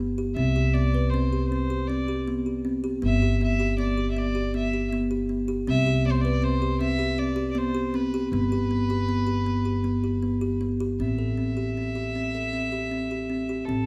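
Contemporary instrumental chamber music in a straight 7/4 at 158 BPM, this pensive, hypnotic excerpt in A minor sets a woody, ringing kalimba playing thumb-plucked arpeggios up front beside a bright, steel-strung upright bass played pizzicato. A single bowed violin with a dark, nasal, gut-string tone in period style carries the melody from 0.4 seconds, sitting distant behind them. Chords move through C5, G6, C and G before settling on Am7 at 11.0 seconds, all held in a moderate scoring-stage reverb.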